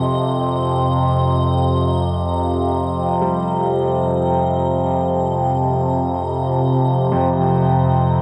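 Dark and ominous, this dark ambient drone drifts in free time over an Fsus2 chord, its up-front sawtooth-and-sine drone sweeping resonant overtones beneath an icy, crystalline glass pad held high on a single Eb5 with an airy noise layer and chorus. At 3.2 seconds a clear concert grand piano enters with intimate, deep-bass arpeggios, delay trailing its long sustain and the sound of its action audible. A cathedral reverb with a 6.5-second tail and the warbling pitch drift of worn cassette tape cloak this brief excerpt from a longer piece.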